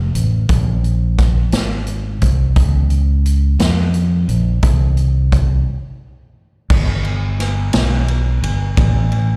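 Fervent and solemn, this slow gospel passage moves at 58 BPM in 6/8, with the beat felt in dotted quarters and a straight feel. It is cut from a longer piece and features just two parts, both placed up front. The fingered electric bass, running from F1 to F2, has a dark, round and punchy tone that sounds direct and amped. A swinging big-band drum kit works across crash cymbal, hi-hat, kick drum, ride cymbal and snare, with a natural, acoustic big-room character, a medium-tuned snare and a boomy kick. A break arrives at 5.7 seconds before the music shifts into a new section at 6.7 seconds. The whole is heard as a live gig through the venue's PA, carrying a touch of club ambience.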